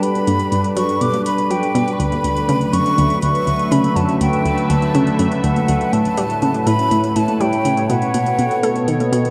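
Ambient, sequencer-driven space music at 122 BPM in a straight 4/4, expansive and cosmic, where a breathy, mellow flute with vibrato carries the melody up front through tape echo over a bright, evolving resonant pad with chorus, a round, nasal analog pluck riff entering at 0.3 seconds, a bubbling stepped-filter texture in the background, and soft electronic hi-hat and congas with metallic hats, all set in a vast cathedral reverb as the chords move from Gmaj7 through D6 and A to B7.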